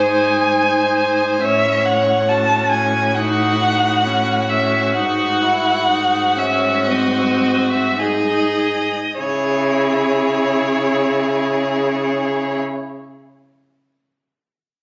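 A phone recording made in the room captures this short cut from a longer classical piece, with a moderate recital-hall reverb around the players and a club ambience underneath. It is a slow, romantic movement for string quartet in C# minor, yearning and melancholic, played with rubato in 4/4 at roughly 47-71 BPM, slowing over the first 9.2 seconds before settling onto C# minor. Up front, one violin carries the melody high in its range with a rich tone, vibrato, soft attacks and portamento, while a second violin sings a smooth, even second line in a clear voice. A single viola, sounding more distant, fills in the accompaniment with the same expressive vibrato and gliding portamento, and a close, focused cello anchors the bass. All four bowed parts play throughout, and the harmony moves through suspended and dominant-seventh colors, G#7sus4 to G#7, before resolving at 9.2 seconds.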